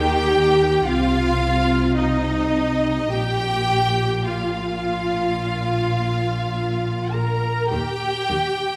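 Classical music for string orchestra, this slow romantic movement unfolds with a tender, warm mood and a flexible rubato feel, heard here as a brief fragment cut from a longer piece. A rich, focused violin section carries the melody up front, singing in a high register with lush vibrato, while a second violin line sits in the background with a soft attack and expressive phrasing. Violas fill in the accompaniment with a smooth, even tone, and cellos and double basses share the bass, the cellos focused with a smooth top and the basses expressive, both ending at 8.4 seconds as the upper strings hold on to 8.8 seconds. The harmony moves from Eb through Cmadd11 and a lingering Bb5 before settling back on Eb. A generous scoring-stage reverb surrounds the ensemble, giving the bowed sections a spacious, glowing sound.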